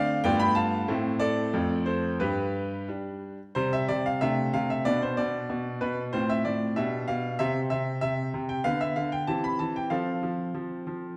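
A brilliant grand piano carries this elegant, graceful classical-period sonatina on its own, sitting up front with a natural tone across a span from F2 to B5. The playing moves in a two-beat metre with a flexible, rubato feel that lets each phrase breathe. The opening passage runs to 3.6 seconds, moving through G9, A minor, F and G before a longer second passage takes over and carries on until 11.2 seconds. Along the way the harmony passes through richer colours such as D5/C, B minor, G7/B and Dm69 before settling onto C/E and F. A generous recital-hall reverb surrounds the instrument, and the overall production leans dark and warm, a soft frame around the sparkle of the piano itself. This is a short section cut from a longer piece.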